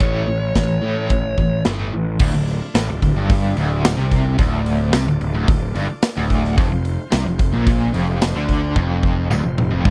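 A dry, close 1970s-style studio sound frames this swaggering, gritty classic rock in D minor at 110 BPM, where a dark, distorted bluesy lead guitar plays a brief line for the first 1.6 seconds over two background riff guitars, one biting and overdriven with tremolo and one bright cranked stack, alongside a punchy, up-front fuzz bass and a big drum kit with boomy kick, medium-tuned snare and toms, before a very quiet, shouting tonewheel organ through a rotary speaker enters at 2.2 seconds, soon joined by a jingly tambourine, and the drums close on a fill from 8.8 seconds.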